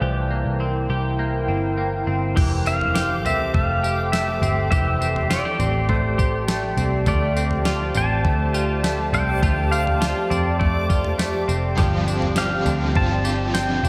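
Soaked in a lush digital hall reverb, this dreamy, ethereal dream pop excerpt in F major drifts at 102 BPM in a straight 4/4, opening on a warbling, nostalgic pad and chorused, hollow-body guitar arpeggios over a dark, foam-muted bass that sits up front. At 2.4 seconds a crisp 8-bit drum machine with a thumpy kick, fat snare, tambourine, toms and crash arrives. At 2.7 seconds a bright pedal steel guitar with fingerpicks and slide follows, carrying the melody through tape echo, and a reversed, granular texture glimmers in the background. The chords move from C7 through Fmaj9 and Dm7 to G7sus4, where at 11.8 seconds a biting, double-tracked overdriven guitar with tremolo joins for the final bars.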